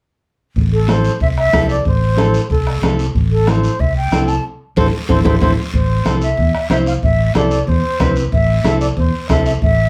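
A brisk, straight 4/4 cumbia pulse at 186 BPM drives this danceable, passionate Latin fragment in A minor, cut from a longer piece and sitting just off standard pitch. The groove is carried by a compressed, saturated bombo struck with a soft beater, bright thin-skinned congas with a damped, vintage, band-limited sound played with hard hands in the background, and a raspy guiro. Up front, a growly, amped fingered electric bass holds the low end between A1 and E2 over an A minor chord. A pure concert flute with soft attack and expressive vibrato carries the melody from A4 to A5, while a dark, full-bodied nylon-string guitar, fingerpicked in a deep classical manner, fills in the middle register. The band hits an accent from 4.4 to 5.7 seconds before the music moves into a second section, all heard from further back in a wet small room.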